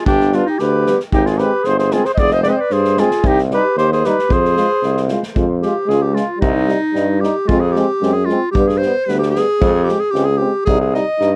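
Balkan brass band folk at 113 BPM in a swung 2/4, set in F Dorian sharp 4 with a bittersweet, virtuosic mood, cut from a longer piece. A mellow, up-front flugelhorn with vibrato, scooped notes and tape echo carries the jazz-inflected melody until 5.1 seconds, after which the clear, classically styled clarinet, already present as a second line, takes a solo from 5.4 seconds. Beneath them a vintage tuba holds the bass, while a distant, roomy trombone and a warm euphonium with light vibrato supply accompaniment, and an acoustic drum kit played with bundle sticks adds a punchy kick and a medium-tuned snare, all in a dry room with little reverb.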